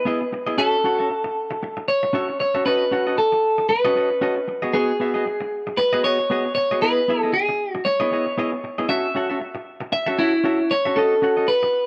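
A dry, close recording with the intimate feel of a 1970s studio and a light reverb. This disco excerpt, cut from a longer piece, moves at 116 BPM in 4/4 with a swung sixteenth-note feel that makes it danceable and glamorous. A clean electric guitar carries the melody between E4 and E5, its picked tone bright and twangy and set up front. Beneath it, a semi-hollow electric guitar plays accompaniment from B3 to F#5, a little quieter yet still up front, with a compressed, hollow-body character bathed in spring reverb. The harmony cycles through jazzy extended chords, C#m9, F#m7, B9 and Emaj9, giving the roughly 12-second passage a lush, sophisticated colour.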